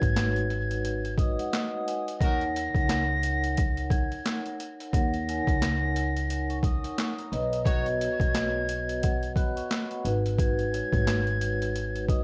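A gritty, overdriven sampler-style drum kit sits up front in this dark boom-bap hip-hop excerpt, with a thumpy kick, high-tuned snare, handclaps and hi-hat swung on the 16ths. A growly, woody pizzicato upright bass anchors the low end, while a mellow, band-limited vibraphone with soft mallets and slow motor vibrato rings beneath a pure, hollow concert flute melody high in its register. A clear trumpet section adds brief tape-echoed stabs at 2.2 and 7.6 seconds, and the whole recording carries a worn cassette warble with light reverb.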